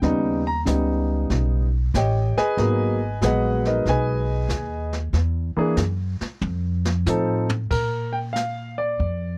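A dry, close studio sound in the 1970s manner frames this swinging, sophisticated jazz piano trio fragment, where an up-front concert grand with deep bass takes a solo until 7.7 seconds over harmony moving from Eb7b13 and Abm9 through an unaccompanied break to F7, a woody pizzicato upright bass on steel strings anchors the low end, and a brushed drum kit with dark cymbals, a punchy kick and a rolled-off top sits lower in the mix before its fill from 6.4 seconds carries the trio onto a Bb chord.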